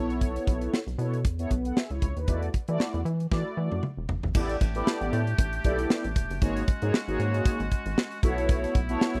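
A rubbery, hollow square bass sits up front in this slick, late-night slice of early-eighties boogie funk at 116 BPM, riding a lightly swung sixteenth feel alongside a polished acoustic drum kit with a punchy kick and high-tuned snare that plays a fill from 3.3 to 4.4 seconds. Round, brassy synth brass with chorus and phaser carries the harmony over B9sus4 and E9sus4. At 4.4 seconds a clear woodwind section enters with sustained chords as the progression moves through A9sus4 and G#9sus4, all captured in a dry, close, 1970s-style small-room sound.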